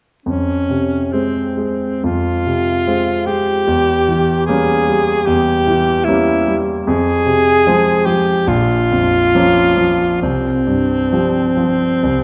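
Yearning and solemn, this romantic classical excerpt in F minor moves at a rubato 63-76 BPM in 4/4, with an edgy, vibrato-laden alto saxophone singing the melody up front in a classical style over a bright concert grand piano whose deep bass and short sustain accompany through Fm, Edim7, Bbm and a closing Csus4 from 0.3 to 12.2 seconds, all set in a moderate concert hall reverb with a dark production and vinyl crackle.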